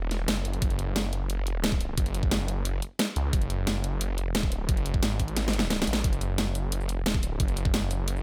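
A snarling, tube-saturated saw bass growls from the start between E1 and C#2, detuned and resonant with a moving notch, as a dubstep kit of hi-hat, shaker and a huge snare joins almost at once. This dark, aggressive technical drum and bass in F# minor runs at 177 BPM in a straight 4/4, with an overdriven, knocking electronic kick arriving at 0.6 seconds and a drum fill from 5.4 to 6.0 seconds. The futuristic sound is dry and up front, cut from a longer piece.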